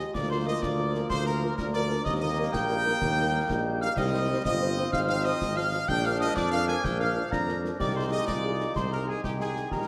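A rousing, festive military-style march for wind band in a straight 6/8 at 125 BPM, where a bright trumpet section with light vibrato carries the melody over an up-front mellow tuba bass and clear trombone chords, while a background euphonium, a very quiet woodwind section, a hollow piccolo, a bell-like glockenspiel played with soft plastic mallets and very quiet French horns add second lines and accompaniment, all set in a wet scoring stage reverb with a close, dry kit of concert snare, dark clash cymbals and bass drum tucked behind.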